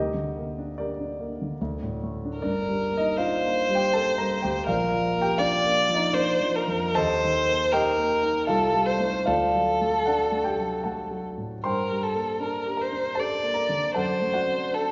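Yearning and solemn, this romantic classical duo in G minor moves at 78 BPM in a rubato 3/4. A warm concert grand piano with deep bass and short sustain opens the accompaniment, and a rich, bowed solo violin enters at 2.4 seconds to carry the melody with expressive vibrato and portamento. The harmony passes through Gm, Bb, Eb and D before closing on D7/F#, and the recital hall's reverb and muted top end surround both players.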